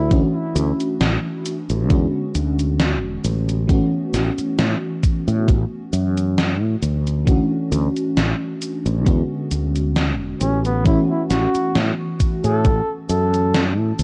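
A faded, dreamy vaporwave excerpt opens with a lush, detuned FM electric piano carrying tremolo, chorus and tape echo over a growly fretless bass, while a thumpy electronic kick and a gated 80s drum machine with snare, hi-hat and cabasa sit up front in a dry, gritty cassette sound, until a breathy, mellow flugelhorn with vibrato and tape echo returns at 10.4 seconds for a short jazz-style solo over gently swung Dmaj7, E13 and A69 chords.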